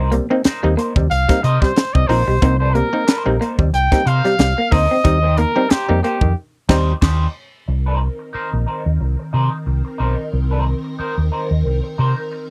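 A funky, hypnotic C minor groove at 91 BPM opens on a round, punchy fingered bass and a wah-coloured, slightly broken-up electric guitar, joined almost at once by a twangy, picked guitar riff, muted clav stabs and a crisp fusion kit with a high-tuned snare and dark cymbals, over a lightly swung sixteenth feel. From 1.1 seconds a vibrato-laden trumpet takes a vintage, pop-style solo up front, and as the section closes with a band accent, the riff guitar, clav and drums drop away in turn. A swirling, phased string machine enters at 7.9 seconds beneath the bass and wah guitar, giving this dry, close 1970s-style studio cut from a longer piece a warbling, sustained glow.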